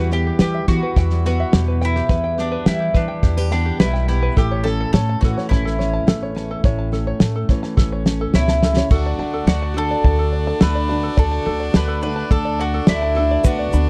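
Mandolin, fingerpicked steel-string acoustic guitar, open-back banjo and upright bass open this uplifting, nostalgic indie folk excerpt together, with a loose indie drum kit joining almost at once in a straight 4/4. The bright, double-strung mandolin carries the melody over the guitar's fingerpicked accompaniment and the banjo's plunky, twangy arpeggios. Up front, the woody, thumpy pizzicato bass sits beside the drums, which have a fat snare and a tight kick. A drum fill at 7.8 seconds leads into a fuller passage at 8.9 seconds, where the fingerpicked guitar gives way to a picked acoustic guitar in the background. There, a single rich fiddle adds an earthy second line with light vibrato and an airy bow, and a very quiet, reedy, breathing harmonium holds sustained chords. A grainy tube shaker slips in at 13.4 seconds just before the cut, while the dry, close 1970s-style studio sound frames chords moving from Em to A to D as the arrangement builds.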